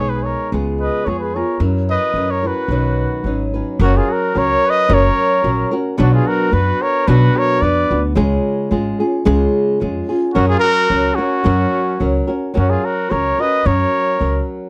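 A mellow, soft-attacked lead trumpet with slapback echo opens this proud, romantic mariachi excerpt at 110 BPM in 2/4, heard together from the start with a clear, distant second trumpet carrying light vibrato, an up-front fingerpicked flamenco guitar and a woody, thumpy pizzicato upright bass, shifting from B major to F# major at 3.8 s, with both trumpets resting from 8.0 to 10.3 s, all in a dry, close 1970s-style studio sound.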